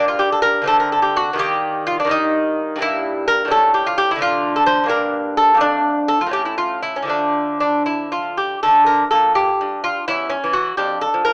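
Set in 6/8 at 84 beats per minute, counted in dotted quarters, this baroque-style classical dance moves with a rubato feel that gives it a solemn yet flowing character in D minor. A single fingerpicked lute carries the whole piece, with a bright, delicate nylon-string tone enriched by double courses and some octave-doubled strings, reaching from E2 up to C5. The harmony moves from G minor through E-flat, a diminished chord and an A7 before settling on D minor, then passes through further cadences on A and D minor. A new section begins at 8.6 seconds on a bare D fifth, leaning through a C-sharp minor colour before resting on D minor over F as the passage is cut off at 11.3 seconds, clearly taken from a longer work. The lute sits up front in a small room with light reverb, and the rough home-demo mix has a small-speaker quality.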